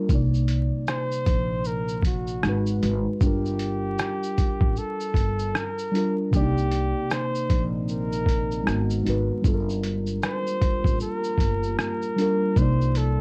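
Nostalgic and hazy, this lo-fi hip hop excerpt swings in 4/4 over an up-front, muffled, overdriven sampler-style drum kit of thumpy kick, rim click, hi-hat and shaker, with a woody pizzicato upright bass and muted, felt-like synth keys softened by chorus, cassette tape and a low-pass filter. From 0.9 s, a breathy flugelhorn carries the jazz-style melody with light vibrato and scooped notes. At 7.7 s, a deep, detuned ambient pad returns very quietly beneath the Cm9, Abm7 and Gm7 changes, while worn, warbling tape, vinyl crackle and light reverb colour the recording.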